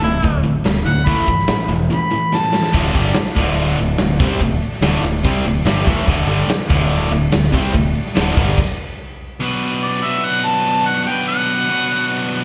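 Heard through a club PA with moderate room reverb, this swaggering, confident classic rock excerpt opens with an up-front harmonica solo, smooth-topped with light vibrato and carried by plate reverb, slapback and tape echo, over two bright, overdriven picked electric guitars, a growling fingered bass and a huge arena drum kit with punchy kick and bright cymbals; a very quiet tonewheel organ with key click and rotary speaker joins at 2.7 seconds, the bass, drums and background guitar drop out around 8.6 seconds, and the harmonica returns at 9.8 seconds over the front guitar and organ.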